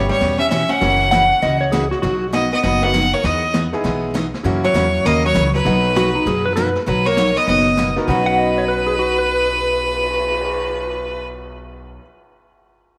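A clear, up-front fiddle carries the melody with light vibrato and an intense edge, its distant quality touched by tape echo in this playful, swinging western swing excerpt in B major at 198 BPM. Beneath it, a dark, clean hollow-body archtop guitar, miked and amplified and also touched by tape echo, plays a picked second line. Meanwhile a twangy, compressed lap steel adds its own slide line, first from 1.1 to 2.3 seconds and again from 6.0 seconds onward. A bright, full-bodied dreadnought acoustic guitar and a brilliant, woody upright piano sitting in the background fill out the accompaniment over chords such as F#7, Bmaj7 and Emaj7. A thumpy gut-string upright bass, played pizzicato, anchors the low end, and a vintage kit played with brushes, with a punchy kick and a rolled-off top, stays in the background until 10.4 seconds. The fiddle drops out at 11.3 seconds, and the whole band sits in a moderate echo-chamber reverb with small-room ambience.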